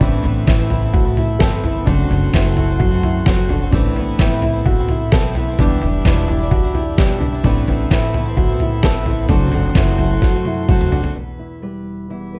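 A bittersweet, stirring indie folk passage opens with most of the arrangement at once: a muffled, compressed lo-fi sampler-style drum kit with a thumpy kick sits up front over a woody pizzicato upright bass. Around them, a bright, shimmering picked twelve-string acoustic guitar, a reedy pedal harmonium holding sustained chords, a very quiet felt-muted upright piano with audible action noise, and a boxy, short-sustained upright piano playing arpeggios through slapback echo fill out the texture, all in a dark production with little reverb. After a drum fill at 10.2 seconds, a fingerpicked steel-string acoustic guitar enters up front at 11.2 seconds, joining the bass for the closing moments of this fragment.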